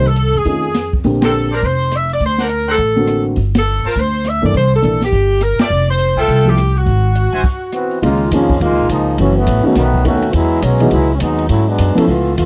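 A clear, up-front saxophone section carries the melody in this brassy, swinging big band jazz excerpt at 207 BPM, over dark, mellow upright piano, growly pizzicato upright bass and a punchy, polished drum kit with ride, hi-hat, crash and rim clicks, while a distant trumpet section adds stabs and the band hits accents until a stop at 7.4 seconds, after which a tight, vintage trombone section takes a solo from 8.0 seconds, all in a dry, close 1970s-style small-room sound.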